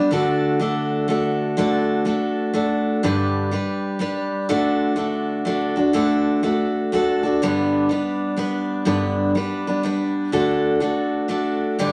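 A picked steel-string acoustic guitar plays alone throughout this short country passage, its bright, full-bodied dreadnought tone sitting up front with audible finger squeak as it moves between G2 and B4. The mood is easygoing and heartfelt, swaying in 3/4 at 124 BPM with a swung eighth-note feel in G major, the harmony shifting between D and G, and a new section arriving at 8.9 seconds. A wet studio reverb and a layer of vinyl crackle give the recording a lived-in, intimate sound.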